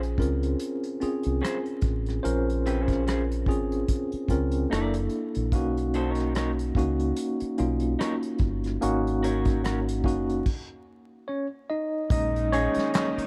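A tine electric piano with a medium tremolo opens this soulful, smooth neo-soul R&B excerpt at 73 BPM in 4/4, its clean combo-amp tone sitting up front over a round, punchy dub bass and an acoustic drum kit played with bundle sticks, with a tight kick, medium-tuned snare, rim clicks, handclaps, hi-hat and crash. The sixteenths carry a gentle swing, and the harmony moves from Bbm9 through Gb7alt and Bmaj9 to Ab9sus4. At 1.4 seconds a fingered electric guitar joins as a second line, slightly broken-up and compressed through a small old amp for a lo-fi edge. The groove breaks for a stop at 10.5 seconds, and at 12.1 seconds the electric piano takes a solo turn on Bbm11 while a lush, bowed string section enters softly in the background with smooth vibrato. The dark, warm production adds light reverb, a small room ambience and a layer of vinyl crackle.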